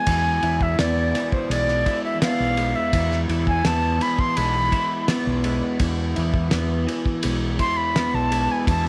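Trippy and hypnotic, this psychedelic rock passage moves at a straight 84 BPM in 4/4 and stays on an E chord, with a bright, reedy concert flute taking an airy solo with vibrato and tape echo across the full 8.9 seconds. Beneath it, a slightly broken-up, lo-fi electric guitar plays a riff through a rotary speaker, while a very quiet tanpura supplies a buzzing, shimmering drone. From 0.1 seconds, a growling, overdriven fingered bass and an up-front, cloth-damped drum kit join in, the kit thuddy with a fat snare, tight kick and dark ride and splash cymbals, all set in small room ambience.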